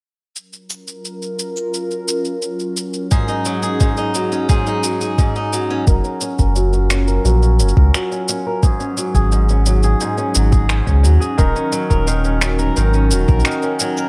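Set in a digital ambience, this folktronica excerpt moves at 87 BPM in a straight 4/4 in Gb major, with a pastoral, playful mood. It opens on a warbling, nostalgic, lo-fi pad of detuned sawtooth and triangle tones, holding slow-attack sustained chords coloured by chorus, built-in reverb and phaser, alongside produced electronic cabasa and finger snaps. At 3.1 seconds a bright, boxy picked acoustic guitar arrives up front with swing-style arpeggios, audible finger squeaks, a low-pass filter and delay, joined by a soft, overdriven electronic kick. From 5.9 seconds a deep, round sine sub bass with a fast attack and mellow sustain fills out the low end, while a filter sweep runs across the guitar. The harmony cycles through Gbmaj7 and Ab7sus4 before settling on Ebm7.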